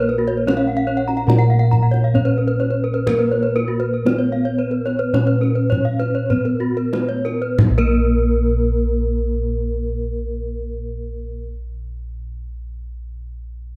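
Balinese gamelan in Bb pelog, brilliant and hypnotic, slowing within a 44-79 BPM range over its opening 7.6 seconds before a new section, with a mellow, airy bronze metallophone carrying the melody on padded disc mallets, two paired-tuned metallophones (one bright under a horn mallet, one struck with a wooden mallet) spinning shimmering arpeggios above, round, beating bossed gongs up front holding the bass on padded beaters, and a tight, distant kendang played with soft hands until 8.2 seconds, all captured by close, detailed microphones in light reverb.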